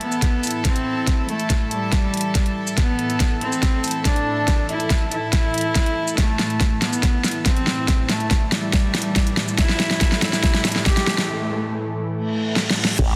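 A biting, earthy bowed cello melody with dub echo opens this aggressive, chaotic heavy wobble dubstep excerpt in half-time, over a thick, warbling vintage unison pad whose filter sweeps through the build-up, reedy gut-string chamber strings pumping quietly beneath, and an overdriven, up-front kit of huge snare, hi-hat, shaker and crash joined by a knocking electronic kick, with drum fills running until a break at 11.3 s, a very quiet riser, reverse cymbal and impact arriving from 8.2 s, and a detuned sawtooth formant-sweep wobble bass entering with the impact at 13.0 s.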